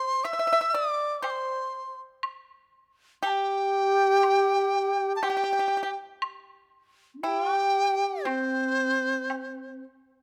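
A large dizi leads this pastoral, graceful passage of Chinese traditional chamber music, its bamboo tone pure and buzzing, with vibrato, soft attacks and lifted highs as it carries the melody up front at a rubato 60 BPM in C gong mode. From the start, an airy, end-blown low xiao and a bright, fingerpicked pipa with a dry, percussive edge share the second line, while a close woodblock enters at 0.2 seconds. Light reverb and detailed close microphones give this short cut from a longer piece an expressive feel.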